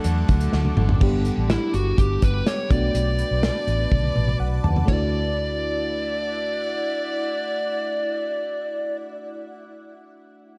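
Nostalgic and uplifting, this short cut of 1980s-style pop moves at 124 BPM in a straight 4/4 in D major, its chords shifting from D to G and Bm7 before settling on Dadd9. A modern studio drum kit with a tight kick and medium-tuned snare drives the opening, rolling through fills before dropping out at 5.0 s, while a punchy, foam-muted fingered electric bass sits up front with a round, dark tone. A glassy FM electric piano with a bell-like attack and chorus carries the accompaniment throughout, adding its own fill just before the Dadd9 arrives. A vivid, overdriven electric guitar with lush chorus appears only in the first 1.5 s, after which a fuzz lead guitar, compressed and distorted with digital delay, takes the melody up front. Above it all hangs a shimmering ambient pad, ethereal and granular with an octave-up sheen, and the whole production is dark and warm, set in a small room with light reverb.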